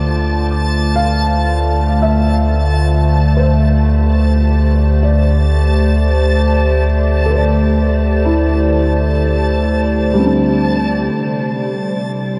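A warbly, detuned tape-like pad sits up front in this spacious, reflective ambient fragment in free time, holding mellow, nostalgic Dm7 chords through chorus and shimmer reverb. A felt-muted upright piano plays soft, boxy arpeggios with audible action noise and tape echo, while a round sine sub bass holds a deep D until 11.1 s, when the harmony moves to C5, and a bright, granular backwards texture swells high above. The dark production is bathed in a huge, wet reverb with a 9.0 s tail, tuned to A4 = 437 Hz.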